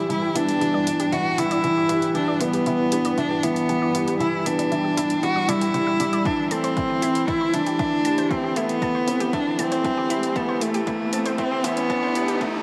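Piano and strings electronica at 117 BPM in G major, tender and hopeful, building steadily as a clear, up-front bowed cello with vibrato sings the melody over a thick-felt upright piano riff, a cloudy granular pad and a round, nasal analog pluck arpeggio with chorus and delay sit in the background with sidechain pumping, an overdriven electronic hi-hat ticks throughout, a punchy overdriven kick enters at 6.3 s, and a very quiet riser rises in at 9.2 s, all within a lush hall reverb.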